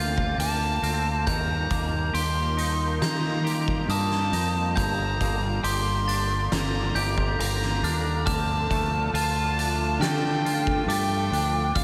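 Post-rock in a melancholic, cinematic vein, this brief cut from a longer piece sets a bluesy, distorted lead guitar melody with diffuse ambient delay over a twangy, chorused electric guitar picking arpeggios and a ringing, bell-like glockenspiel struck with hard plastic mallets. Beneath them, a growling overdriven bass sits up front, while a dark, softly bowed string section holds sustained chords in the background and an oversized, low-tuned drum kit with a fat snare and punchy kick joins at 0.2 seconds. The dreamy mix is soaked in a huge ambient reverb as the chords move from Bbadd9/D through Ebadd9 and Gm7 to Dm.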